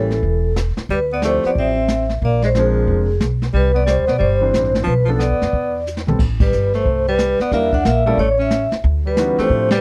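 Playful and relaxed, this is a short excerpt of small-group swing and bop jazz at a brisk 181 BPM in 4/4, with a loose swing on the eighth notes, starting in C major before turning to A minor at 6.2 seconds. A metallic, ringing vibraphone struck with medium hard mallets carries the melody with a fast motor vibrato, while a clear, close-miked alto saxophone adds a second line beneath it, its tone colored by vibrato and scooped notes. An intimate concert grand piano supplies accompaniment with deep bass and a touch of audible action noise, giving it a vintage character. A woody pizzicato upright bass on steel strings sits up front with the brushed drum kit, whose dark cymbals, medium-tuned snare and boomy kick have a rolled-off top. A drum fill from 5.9 to 6.2 seconds leads into the minor-key passage, where the band hits an accent at 6.4 seconds over chords moving from Am9 through Em7b5. 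The sound is that of a dry, close 1970s-style studio session in a small room.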